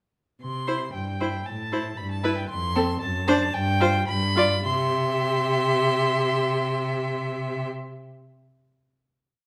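A first violin and cello open this brief, spirited and graceful classical-period piece for string quartet at 0.4 seconds, the violin's rich, smooth vibrato carrying the melody up front while the focused, close cello bows bass on the beats, and a clear second violin and warm viola join at 0.7 seconds with short accented chords. The harmony moves through a graceful cadence as the pace slows from 2.0 seconds, settling at 4.7 seconds onto a final sustained chord where the viola's expressive portamento and the cello's held bass ring out. A moderate recital hall reverb surrounds the quartet.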